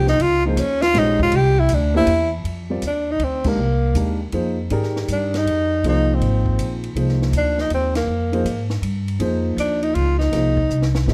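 A breathy, mellow tenor saxophone leads this hypnotic, searching modal jazz excerpt in a swinging 3/4, its subtone and scooped notes floating up front in plate reverb over chords moving from Dbsus2 and C to Fm11. A warm grand piano supplies accompaniment while a woody pizzicato upright bass sits close, and a compact cocktail kit with dark cymbals, a high-tuned snare and a tight kick stays low in the mix. The band hits accents at 3.4 and 7.9 seconds, and a brief drum fill arrives at 10.7 seconds.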